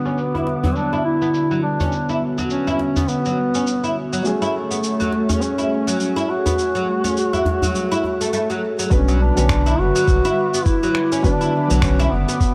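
In this mystical organic downtempo piece at 103 BPM with a swung 16th feel, a mellow duduk carries the folk-style melody up front from the opening, its vibrato and scooped notes trailed by digital delay, over a soft, felt-muted upright piano in the background and a smooth, detuned analog pad with chorus, both pumping against the sidechain. A woody, fretless oud adds plectrum-plucked arpeggios through a low-pass filter and delay, while gritty, tape-toned electronic shaker and finger snaps and a deep djembe with metal rattles move over Bm and F#madd9 chords, the djembe dropping out at 8.2 s. At 8.9 s, as the harmony returns to Bm, a round sine sub bass and a thumpy, compressed electronic kick enter, the whole dark production set in a moderate concert-hall reverb in this excerpt from a longer piece.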